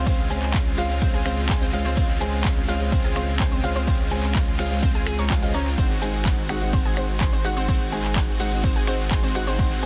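A dense, heavily limited mix with studio reverb carries this uplifting, expansive progressive house excerpt at 126 BPM in Db major, where an overdriven, punchy electronic kick joins a round, deep analog bass, dark and intimate grand piano stabs with audible action noise and dub echo, detuned sawtooth pluck arpeggios with chorus and a moving notch, a background supersaw swell of evolving sustained chords, crisp background dance-kit hats, snaps, claps and ride, a very quiet fat-snared low-tuned acoustic kit in a bright stone room, and grainy maracas, all but the kick, the maracas and the acoustic kit pumping to the sidechain as Dbmaj7 gives way to Ab7 at 5.8 seconds.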